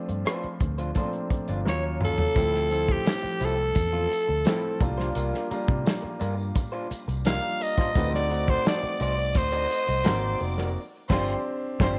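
A straight 4/4 groove at 86 BPM anchors this silky, cinematic slice of lush 1970s-style soul in D minor, where a dark soul drum kit with a punchy kick up front, a round foam-muted fingered bass, a deep-bassed concert grand piano and a slightly broken-up, lo-fi electric guitar riff in the background carry the harmony while a raspy, gritty alto saxophone with slapback echo takes the melody from 1.7 s, a distant jingly tambourine joins at 2.4 s, and a bowed string section with portamento adds a second line from 8.0 s before a band accent closes the clip in moderate spring reverb.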